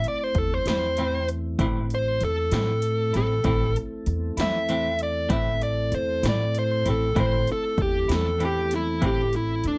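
Soulful and brooding, this slow blues excerpt in A minor moves at 65 BPM in a 12/8 metre, with a dark, smooth, overdriven lead guitar soloing up front over a single A minor chord. A soft, flute-like tonewheel organ holds sustained chords through a slow rotary speaker, while overdriven 80s electronic pad drums bring a punchy kick, gated snare and metallic hats. A woody, growly upright bass enters at 0.4 seconds and a clean, picked electric guitar with tremolo joins at 0.7 seconds, all set in a dark production with light reverb.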